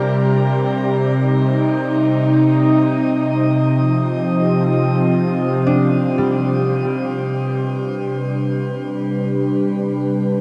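Awash in a dark, shimmering reverb with a 7.3-second tail, this serene, spacious ambient excerpt in free time, tuned to A4 = 441 Hz, sets a warbling, detuned analog synth pad up front, holding soft-attack chords under a lush chorus as they move from Cm7 to F5/C and then G/C, while a ringing concert harp fades in with fingerpicked arpeggios through a diffuse ambient delay until it stops at 8.5 seconds, and a filter sweep on the pad carries the final stretch from 6.9 to 10.4 seconds.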